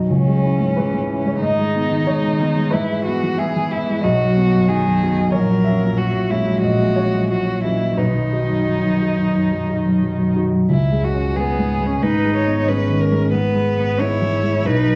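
Through a worn, warbling cassette haze with spring reverb and small-room ambience, this hopeful, intimate neoclassical piece for piano and strings moves at a rubato 91 BPM in B major, where an up-front baby grand with long sustain carries the accompaniment beneath a veiled, close muted violin melody with vibrato and a dark con sordino cello second line, before a bowed muted double bass joins at 10.7 s.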